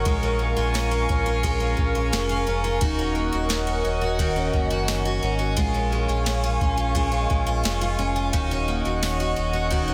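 Hazy and haunting, this dream pop excerpt drifts at 87 BPM in a straight 4/4, settled in Eb minor as the chords alternate between Bbm7 and Ebm7. A warbly, tape-like pad holds sustained chords with a detuned, nostalgic lo-fi character, its chorus and built-in reverb lending it a dark haze. Beneath it, a picked twelve-string acoustic guitar plays bright, shimmering, octave-doubled arpeggios up front, coated in lush chorus and digital delay. A deep, full sub bass with an octave anchors the low end, while a soft vintage rhythm box enters at 0.1 seconds with a deep analog kick, crisp snare, ride cymbal and tambourine. Between 6.2 and 8.7 seconds, a very quiet vibraphone struck with hard mallets adds a metallic, ringing texture with slow motor vibrato. Light reverb and digital ambience surround a dense, heavily limited modern master.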